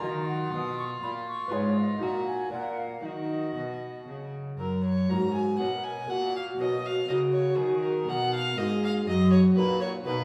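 In a steady, straight triple metre, this grave, introspective baroque-style sonata movement with continuo unfolds as a short passage cut from a longer piece, its harmony shifting to a new key center at 4.6 s. A woody, airy flute carries the melody with tongued notes and vibrato, captured close. Beneath it, a single violin plays a second line in a period style, its gut strings giving a reedy, bowed tone. The lute fills in the accompaniment, fingerpicked and delicate on double strings, with some courses doubled at the octave. A lone bowed cello anchors the bass with a nasal, gut-string sound that sits up front in the mix. All four parts play throughout the 10.2 seconds, heard from further back in a small stone room whose wet reverb lends the ensemble a chamber-like intimacy.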